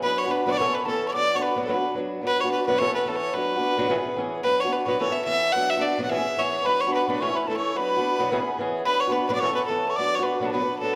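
A swung 4/4 reel races along at 217 BPM in B dorian, its wild, dark and lively drive carried by a single bowed fiddle playing the melody up front with a bright, biting, nasal tone. Beside it, a fingerpicked swing-style acoustic guitar accompanies with a dark, boxy sound and audible finger squeak, while a hollow, pure metal tin whistle adds a tongued, vibrato-tinged second line with a chiff in the background, dropping out at 1.9 seconds and returning at 6.6. The cut from a longer piece sits in a wet recital hall reverb, with chords moving among Bm, A and C#m.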